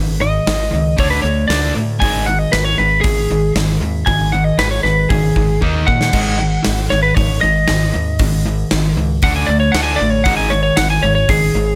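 Driving and heavy, this short hard rock excerpt moves at 116 BPM in a straight 4/4, with a lead guitar solo running across its full length. Up front, a lightly driven lead guitar plays the melody in a slightly broken-up, compressed tone touched with digital delay, entering at 0.2 seconds. Beneath it, two picked electric guitars sit in the background playing the riff, one distorted with overdrive and the other overdriven with a darker edge. A deep, fingered electric bass gives a round, punchy low end. A gated 80s drum kit joins at 0.5 seconds, with bright cymbals, a medium-tuned snare and a punchy kick in a polished stone-room sound, plus a drum fill at 5.6 seconds. The chords shift between power chords on G#5, D5 and D#5, all framed by a small room ambience.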